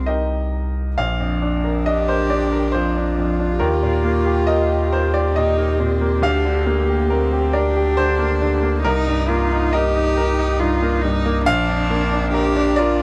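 In a rubato 3/4 at 69 BPM, this intimate, tender neoclassical piece for piano and strings in Bb major sets a bright, up-front grand piano accompaniment over a deep, round sine sub bass, while a close, warm sul tasto cello carries a second line and a single airy-bowed viola joins at 1.0 s, both strings played with soft attacks and light vibrato as the harmony moves from Cm7 through Bb, Eb and Gm/D and back to Bb under light reverb.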